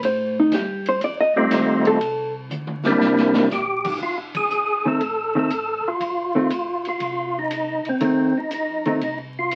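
Soulful and bluesy, this swinging soul jazz organ trio excerpt at 120 BPM in F mixolydian opens with a dark, clean hollow-body guitar solo up front over a round, mellow organ bass with slow rotary speaker and a distant, roomy drum kit that plays a fill at 2.5 seconds. A fat, lightly overdriven, percussive organ melody with chorus vibrato and key click enters at 1.4 seconds and carries on once the solo ends at 4.0 seconds, all steeped in the crackle of a very old 78 rpm record.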